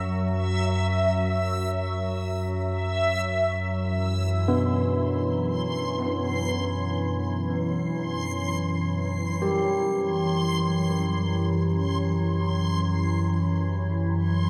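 An up-front, organ-like drone of sine-toned unison holds a calm, sustained low foundation with ensemble chorus, while a reversed, detuned, granular texture hovers high above it in this ominous, desolate dark ambient excerpt in free time, tuned to A4 = 441 Hz. The harmony moves from Esus2 over F# to Cmaj9#11 over F# at 3.6 seconds, and at 4.5 seconds mellow, bronze carillon bells enter with soft arpeggios, their padded ringing passed through analog delay in a boxy small room. A wet plate reverb soaks the whole mix in a dreamy haze.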